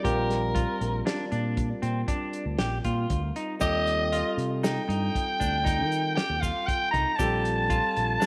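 Bathed in a moderate echo-chamber reverb, this brief, bright and intricate slice of progressive band music in 7/4 puts a raspy, gritty soprano saxophone melody up front over barky tine electric piano accompaniment, clean picked arpeggios from a semi-hollow electric guitar, a fretless bass with subtle chorus, and a soul drum kit with a fat snare and tight kick, while a grainy tube shaker joins in the background at 3.6 s.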